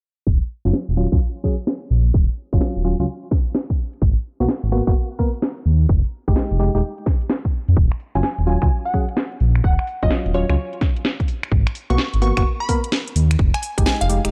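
Soulful and late-night, this 128 BPM two-step UK garage cut in Eb minor swings its 16ths over Ebm9, Abm9 and Fm9 chords, with a deep, rumbling detuned saw bass and a punchy electronic kick up front, both filter-swept. A house kit adds finger snaps, metallic filtered hats and a cracking snare, while a hollow, organ-like stab with chorus, cassette-tape colour and digital delay plays from 0.7 seconds. At 8.2 seconds a crystalline wavetable pluck enters with the melody, bathed in chorus and delay within a dim digital ambience.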